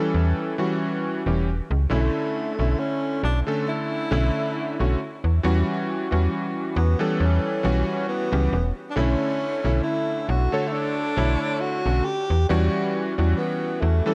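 A hazy, melancholic vaporwave fragment comes through with the character of cassette tape, a light reverb and a faint studio ambience, cut from a longer piece. At a slow 68 BPM in 4/4 with a gentle sixteenth-note swing, it sits in E dorian, tuned slightly under standard pitch, and drifts between Em69 and Bm11 chords. A slap-like FM bass sits up front from the start, its snappy, metallic attack decaying in the low register. A bright electric grand piano carries the accompaniment, cutting and clangy, with chorused unisons, vintage 12-bit sampler grit and analog delay. At 1.9 seconds a breathy tenor saxophone enters with the melody, close-miked and whispered in a jazz style, its vibrato and soft attack washed in tape echo for an intimate, solo voice over the band.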